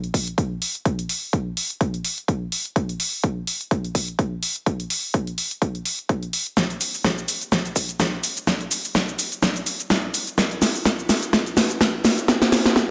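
A moderate digital room reverb hangs around this short cut from a longer bass house piece, giving the close, up-front drums a sense of space. The mood is aggressive and swaggering, moving at 126 BPM in 4/4 with a 56% swing on the sixteenths. A big-room dance drum kit runs throughout, its layered, produced sound carrying hi-hat, shaker and a huge snare. An electronic kick drum joins at 0.1 seconds, punchy and high-pass filtered, sitting a little lower in level than the kit. The whole passage is a build-up, and from 6.6 seconds the drums break into a fill that drives on to the end at 12.9 seconds.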